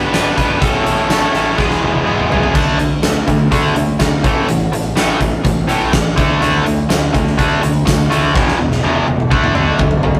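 A bright, overdriven, double-tracked electric guitar riff leads this sunny, confident classic rock excerpt at 124 BPM in 4/4, with a growling, punchy fingered bass sitting in the background and a huge arena drum kit up front whose fat snare, punchy kick and bright cymbals drive fills at 1.6 and 8.3 seconds, moving from G, A and E chords into power chords on D, A and E, all captured as a rough rehearsal-room recording with tube saturation and moderate reverb.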